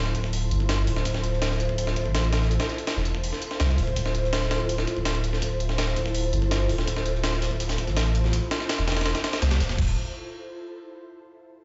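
This raw, dark drum and bass cut, steeped in jungle, runs at 165 BPM in a straight 4/4 and sits in D minor on a single Dm7 chord, taken from a longer piece. A deep, round sub bass built from triangle and square waves holds the low end up front, its sustained notes thickened by tube saturation. Above it, an ethereal pad of detuned sawtooth and triangle voices with a breathy noise layer fades in slowly and hangs in sustained chords, colored by ensemble chorus, phaser and its own reverb until about 9.9 seconds. The main jungle kit is a gritty, pitched-up sampler kit with a thumpy kick, medium-tuned snare, hi-hat and crash cymbal, compressed and re-recorded in a large room, with high-pass filtering thinning every piece. A second, very quiet breakbeat kit at natural pitch adds hi-hat, snare and tambourine beneath it. The whole mix sounds as if played through a big sound system in a bare stone room, with a dull top end that rolls off above 7.8 kHz.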